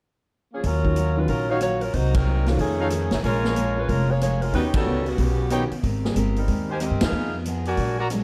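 Lightly reverberant and dark in its production, this short cut from a longer big band swing piece moves at 185 BPM in Eb minor with a sultry, swinging mood. A dusky, vintage-toned saxophone section with light vibrato carries the melody up front from 0.5 seconds, while a woody, thumpy pizzicato upright bass anchors the low end and a naturally recorded drum kit with a punchy kick and a medium-tuned snare swings on hi-hat, ride, rim clicks and snare in a big room. A smooth-topped trumpet section adds stabs from 1.5 seconds, a mellow baby grand piano and a picked steel-string acoustic guitar comp in the background over rich chords such as Ebm9, F7alt and Abmaj9, and full-band accents land at 2.1, 4.7 and 7.0 seconds.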